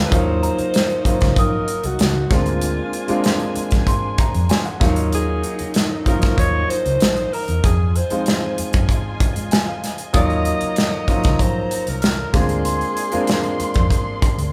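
Lush 1970s-style soul at 96 BPM in Eb dorian, smooth and cinematic and cut from a longer piece: a breathy, subtoned alto saxophone carries a jazz-style melody over a dark, round, foam-muted electric bass with tube saturation, an up-front acoustic drum kit with tight kick, hi-hat and snare, and natural, deep-bassed grand piano accompaniment with fills at 3.9 and 9.2 seconds, while bowed, vibrato-rich strings and a delicate, bell-like celesta that sounds slightly out of tune sit in the background, the band playing live together in one large studio room with moderate reverb.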